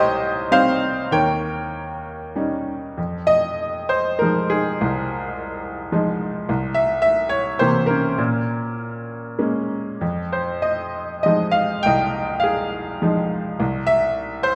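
A bright, worn grand piano sits up front with short sustain in this moody, brooding classical solo in F minor and 3/4, played with rubato at 94-108 BPM, its harmony moving from Cm and Eb7 into a new passage at 3.0 seconds that works through Fm7, C7 and Bbm7 before arriving on C at 13.6 seconds, heard through a moderate recital-hall reverb in this cut from a longer piece.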